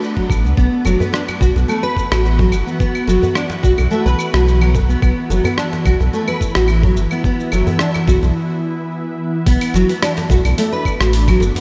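Organic downtempo at 108 BPM with a light sixteenth-note swing, meditative and mystical, where an ethereal, detuned pad sustains Bm7 and E5 chords under a fingerpicked nylon-string guitar playing up-front arpeggios with chorus and delay, a deep round sine sub bass, a gritty, dusty soul sampler-style kit of claves, hi-hat, rim click and shaker, a thumpy electronic kick and a cracking djembe with metal rattles tucked behind, all in a dreamy, reverb-soaked hall, with a break from 8.4 to 9.5 seconds before a new section returns to Bm7.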